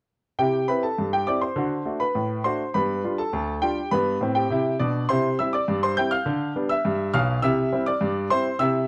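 Set in a straight 2/4 pulse, this short passage of ragtime piano moves with a playful, lively bounce. A single baby grand piano carries it alone from 0.4 to 8.9 seconds, ranging from deep bass notes at B1 up to bright treble at G6. The instrument sounds clear and present, placed up front in the mix with only a light touch of reverb around it. The harmony follows a classic rag path, from C through D7 and G7 back to C, then passing through G7/D before settling on C at 7.4 seconds. Cut from a longer piece, it captures one cheerful stretch of the tune.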